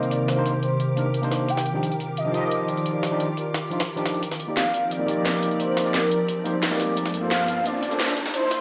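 Lush and melancholic, this excerpt of liquid drum and bass at 175 BPM sets a velvety, detuned sawtooth synth lead with chorus and analog delay over a barky, overdriven tine electric piano with sampler grit and a filter sweep, while a glassy, ethereal FM pad holds ensemble-chorused chords from Cm9 through Ebmaj9, F13sus4 and Gm11. A pitched-up, tape-toned jungle drum kit with a high-tuned snare ticks underneath from the start, and at 4.2 seconds a layered electronic kit with a cracking snare, bright hats and shaker joins for a build-up, with a riser rising in the background from 5.7 seconds. The dreamy mix is soaked in plate reverb and dark on top.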